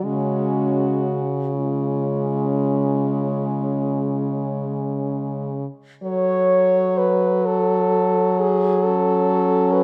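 Four French horns sound together from the very start of this short, melancholic passage, cut from a longer classical piece: a lyrical quartet in F# minor, unfolding slowly and freely in 12/8 at around 39-45 BPM. The melody horn is dark and distant, with a light vibrato and a roomy quality that places it in the background, so the tune sits behind its companions. A second horn carries a warm, soft-attacked counterline, while a third, close-miked horn with vibrato supplies a gentle accompaniment in the lower middle register. The bass horn is clear and up front, its vibrato giving the low notes a singing presence. The harmony rests on C# before moving to F# minor at 6.0 seconds as a new section begins, lending the music a yearning sense of arrival. Light reverb and close, detailed microphones keep the ensemble intimate.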